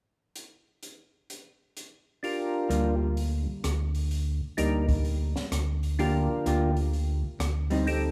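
Soulful and late-night, this soul jazz organ trio excerpt swings at 128 BPM in G minor, opening with an open, acoustic drum kit of high-tuned snare, boomy kick, rim click and hi-hat before a percussive tonewheel organ melody with key click and third harmonic percussion enters at 2.2 seconds, joined at 2.7 seconds by a round, up-front organ bass on slow rotary speaker and a dark, picked hollow-body electric guitar accompanying over Gm7/D and Ebmaj7/D chords, all set in a moderate recital hall reverb.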